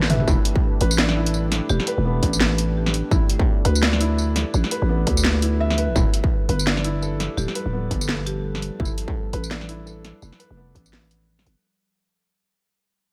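With little room reverb, this dark, cinematic half-time drum and bass excerpt at 169 BPM opens on a drop with a drum fill, a distorted, tape-warm electronic kick and a layered kit of cracking snare, bright hats, tambourine and toms sitting up front with a growling, buzzy 808-style bass, while a felt-muted upright piano plays soft, intimate arpeggios through dub echo over a deep, moody ambient pad with chorus and sidechain pumping in the background, chords move from Em through A5 and Dm to F, a woody, hard-mallet marimba adds brief melody from 1.7 s and again from 7.4 s, and a fade-out begins at 6.0 s.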